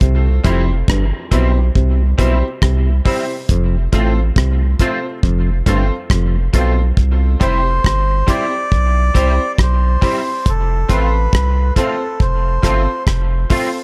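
Laid-back and spacious, this dub reggae excerpt moves at 69 BPM in C major with a swung sixteenth feel, alternating between C and F chords. A round sub bass and a dry, tight 70s drum kit of kick, hi-hat and rim click sit up front. Around them, a stringy clav riff with tape echo plays until 6.8 seconds, a dark, twangy guitar at the edge of break-up adds chorused, echoed accompaniment, and a woody, slightly detuned upright piano throws in bright echoed stabs. After the opening break, a reedy, breathy melodica carries the melody from 7.4 seconds with its own tape echo, all set in a small room with light reverb.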